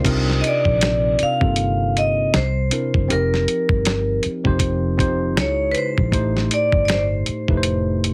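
Heavily compressed, radio-like sound with light reverb frames this late-night, soulful R&B and neo-soul excerpt in C dorian at 79 BPM with a swung sixteenth feel, where a ringing, metallic vibraphone played with hard mallets and motor off carries the melody in a boxy small room, a worn, slightly out-of-tune tine electric piano sits up front as accompaniment, a dark, foam-muted vintage fingered electric bass gives round, punchy low end, and a gritty, tape-warm sampler-style soul drum kit with thumpy kick, medium-tuned snare, hi-hat and crash cymbal plays up front beneath chords moving from Cm11 through C7, F9sus4 and Dbmadd9 to Am7b5.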